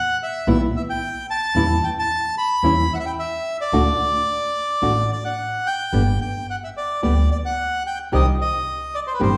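Tango fragment at 110 BPM with a playful, passionate rubato feel, in which a reedy, airy bandoneon sits up front carrying the melody from 0.0 s, joined at 0.5 s by a small, fingerpicked nylon-string guitar with fresh strings and a dark, woody, growly pizzicato upright bass, the trio moving through Em, Esus4, D, G and Cm inside the wet reverb of a recital hall.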